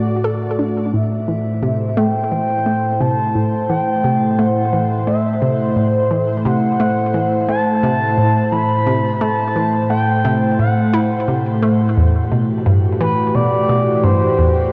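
This cut from a longer piece sits in a wet plate reverb with a 3.5-second tail and carries the worn, warbling pitch drift of old cassette tape. It is ambient, sequencer-driven space music in A dorian at 87 BPM in a straight 4/4, cosmic and mysterious in mood, tuned to A4 = 437 Hz. A lush unison pad of detuned sawtooths, thick and up front with chorus, holds sustained chords with a slow attack and long release, moving from D over A to A minor at 0.9 seconds and on to E minor add9 at 12.0 seconds. Alongside it, a hollow, bouncy square-wave pluck repeats a riff with a fast attack and short decay, its detuned tone dressed in a noise layer, chorus, phaser, delay and its own cassette tape coloring. From 0.9 seconds an expressive synth lead, smooth and mellow with sawtooth and triangle tones, soft attack and vibrato, sings the melody up front through chorus, delay and a shimmer reverb.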